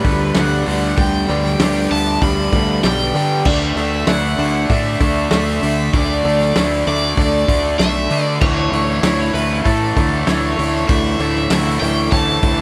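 An up-front fuzz guitar drives this euphoric, cinematic post-rock passage with a distorted, compressed riff, cut from a longer piece and lasting 12.6 seconds. A growling fingered bass with overdrive and a loose indie drum kit, with its fat snare, punchy kick, dark cymbals and gritty, rolled-off top, hold down a straight 4/4 beneath it. A raw garage guitar carries the bright, overdriven melody through phaser and analog delay, while a twangy electric guitar picks arpeggios in the background, bathed in lush chorus and analog delay. A very quiet twelve-string electric adds bright, clean arpeggios, and an icy, crystalline glass pad with a slow attack sustains airy chords underneath. Over a small room ambience, the harmony moves from G/D to Dsus2 at 3.5 seconds and A/D at 8.4 seconds, with every part playing from start to finish.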